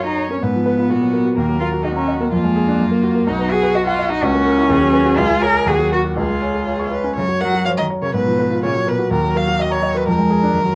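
A quick, cheerful classical-period movement for piano trio in F# major, this short excerpt moves at a lively 126 BPM in a straight 2/4, with all three players sounding from start to finish. A smooth, even violin carries the melody with vibrato, while a rich, expressive cello sits up front with a bowed second line of soft attacks and sliding portamento. A clear concert grand, also up front, supplies accompaniment with deep bass and short sustain, all under light reverb and the worn, warbling pitch drift of old cassette tape.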